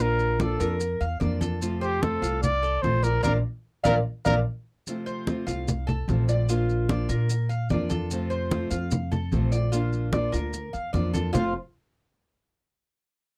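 Warm and danceable, this short Cuban son and guajira cut in F major at 148 BPM opens with an intimate, whispered trumpet melody full of vibrato that drops out at 4.3 seconds during a band accent, leaving fingerpicked nylon-string guitar, metallic double-strung tres arpeggios, a woody, thumpy pizzicato upright bass up front, hard-hand congas and grainy maracas to carry the groove in a dark, dry mix.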